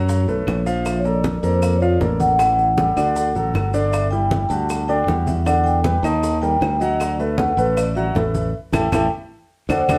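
Heard from further back in a wet studio room, this short cut from a longer Afro-Cuban jazz piece in D major moves at a sophisticated, danceable 156 BPM in straight 4/4. A ringing, metallic vibraphone with soft mallets and a medium motor vibrato carries the melody over an intimate concert grand piano with deep bass, long sustain and audible action noise, while a growly, punchy fingered electric bass sits up front. Tight, high-tuned bongos, low-tuned congas, woody claves and grainy, distant maracas fill the background, and the whole band hits an accent from 8.5 seconds, capped by a drum fill at 9.5 seconds.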